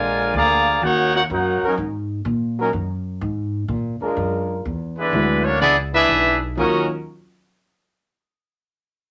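A vintage-toned, up-front trumpet section with clear vibrato carries the melody of this sultry big band swing excerpt, shadowed by a dark, distant trombone section and a woody, thumpy upright bass plucked on steel strings. At 1.6 s a second trombone section takes over with sustained chords of light vibrato, before the trumpets and darker trombones return at 5.0 s. A natural-sounding baby grand piano adds accompaniment from 5.1 s, all within a wet small-room reverb.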